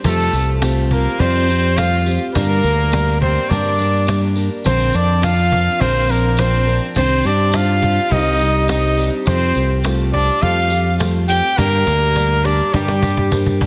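A mellow trumpet carries the yearning melody up front with light vibrato in a classical style, shadowed by a smooth, bowed fiddle line with slapback echo, in this stirring indie folk passage at 104 BPM in G minor, cut from a longer piece. A shimmering, octave-doubled twelve-string acoustic guitar and a very quiet felt-muted upright piano with audible action noise fill out the chords from Fadd9 through Gm, Bbadd9 and Cmadd9, over an up-front fingered electric bass, with a woody cajon and jingly tambourine sitting in the background. The building arrangement has a big arena sound in a moderate scoring-stage reverb, and a cajon fill arrives at 11.6 seconds.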